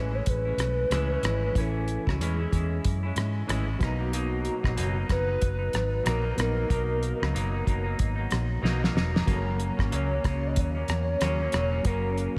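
Indie bedroom pop with a hazy, nostalgic mood, this excerpt pairs a warbling, detuned square-and-sawtooth lead melody carrying chorus, vibrato, slapback echo and digital delay with a bright, picked clean electric guitar that drifts in pitch, soft round electric-piano-like synth keys with tremolo sitting in the background, a dark, foam-muted fingered electric bass up front, and a cloth-damped, thuddy drum kit with a fat snare and tight kick entering at 0.3 s and playing a fill at 8.6 s, all washed in a lush hall reverb for a big arena sound as the chords move from Amaj7 to Bmaj7 to F#.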